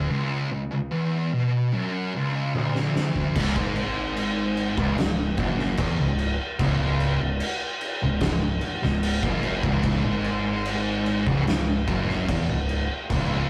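A thick, fuzz-drenched electric guitar opens this brooding stoner and doom metal fragment, its double-tracked riff sitting up front and low in its range, with a growling picked bass underneath that is dark, round and overdriven. At 2.5 seconds an oversized, low-tuned acoustic drum kit enters with a fill, and it carries the music into a new section at 3.4 seconds. From there the drums hold a straight four-beat feel, with a fat snare, a punchy kick and crash cymbals that sound gritty and saturated in a bright stone room. The guitar keeps its distorted, picked riff going while the bass stays direct and amped beneath it, giving the whole an ominous weight. The sound is a rough rehearsal-room recording with a moderate small-room reverb and a glow of saturation, and the piece is cut from something longer.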